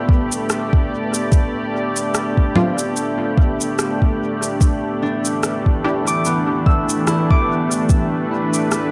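A faint mains hum and a moderate concert hall reverb frame this spacious, deep ambient dub fragment at 73 BPM in 4/4 with a light sixteenth-note swing, where an up-front, moody pad of detuned sawtooth with chorus holds Dm7 shifting to Em7 over a soft electronic kick and electronic shaker, rim click and congas with dub echo, an airy, breathy wind-like noise texture sits in the background, a very quiet, muted dub chord stab appears at 2.6 s, and a fingerpicked, ringing concert harp enters at 5.0 s with tape-echoed arpeggios.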